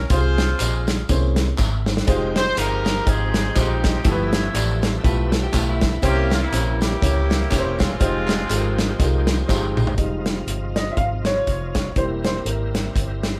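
A small, live-sounding room wraps this fervent, soulful slice of uptempo gospel in F minor, moving at 121 BPM with a swung feel, and cut from a longer piece. An up-front soul drum kit with a tight kick and medium-tuned snare drives it alongside a round, punchy, foam-muted electric bass, while a natural-toned baby grand piano supplies accompaniment throughout. A distant, roomy horn section with light vibrato carries the melody until about 9.5 seconds, over tambourine, tube shaker and group handclaps set far back. From 2.1 seconds a bright, shouting tonewheel organ with key click, light overdrive, chorus vibrato and a slow rotary speaker holds sustained chords in the background, and around 5 seconds a clean, picked electric guitar adds a brief second line. Drum fills mark the transitions, and at 10.0 seconds the piano takes a solo over Fm7 and C7/E, shaded by very quiet sustained chords from a dark, soft-attacked French horn section.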